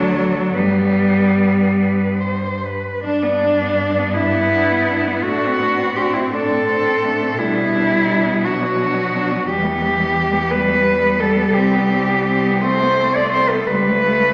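Moving in a six-eight with a free, rubato pulse, this lyrical classical passage for cello ensemble feels serene and tender, and it is cut from a longer piece. Four bowed cellos play throughout its 14.3 seconds, each a single player. The melody cello sits up front, singing in its upper register with vibrato, a soft attack and expressive portamento, while a second line beneath it sounds focused yet distant. An accompanying cello shares the melody's gentle, gliding vibrato, and the bass cello anchors the low end with a close, focused tone. The harmony drifts from D to G and onward through E minor and C before ending on an A7 over C sharp, all bathed in the long, wet reverb of a scoring stage that lends the ensemble a rich glow.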